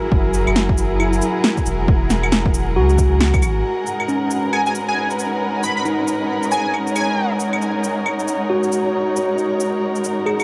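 Melancholic and ghostly, this future garage excerpt at 136 BPM in G# minor swings its 16ths, with a worn, slightly out-of-tune tine electric piano and veiled, con sordino strings holding sustained chords under sidechain pumping, while a punchy overdriven kick drops out at 3.4 seconds and a round, soft dub sub bass follows at 3.6 seconds as the harmony moves from F#9 to G#m7. Overdriven shaker, claves and a fat snare sit up front from 0.3 seconds onward, a flickering, grainy texture drifts in the background from 4.2 seconds, and a catchy, bright, detuned unison lead with a filter pluck, analog chorus and tape echo appears briefly from 4.5 seconds. Vinyl crackle and light digital ambience frame the sound.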